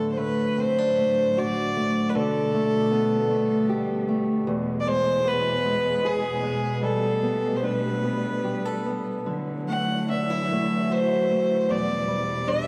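A clear, earthy solo fiddle with light vibrato carries the tender, nostalgic melody of this Celtic slow air in D mixolydian, moving freely in rubato around 75 BPM in 3/4 across the 12.7-second excerpt. Up front beside it, a dark, boxy fingerpicked parlour guitar accompanies, while a lush, focused symphonic string section sustains low chords from a more distant place. A huge, wet ambient reverb sets the whole ensemble back in a large room, giving the piece a spacious, wistful glow as it passes through D, Gadd9 and E before settling on Em.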